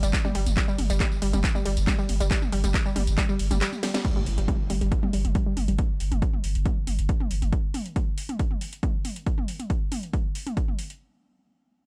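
A dry, gritty hardware recording carries this relentless, hypnotic slice of driving peak-time techno at 138 BPM in straight 4/4, where a punchy, up-front electronic kick and a deep, thick saturated sub bass with overdrive and sidechain pumping anchor a G5 drop, a detuned, wave-folded unison pluck riff warbles through tube saturation and tape echo until 5.7 s, and a techno kit of cracking snare, metallic hats, claps, tambourine, toms, ride and crash rolls a fill at 3.8 s into a very quiet electronic impact and a filter sweep at 4.0 s, running on to 11.0 s.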